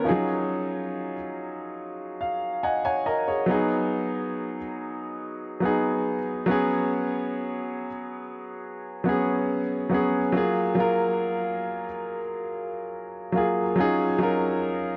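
An intimate grand piano plays alone through this romantic, dreamy R&B fragment, its long sustain, delay and audible action noise sitting up front in a small room, with a brief fill at 1.8 s and rich chords such as D#m11 and F#maj9 drifting through a worn, warbling cassette-tape sound that wavers in pitch and rolls off the highs.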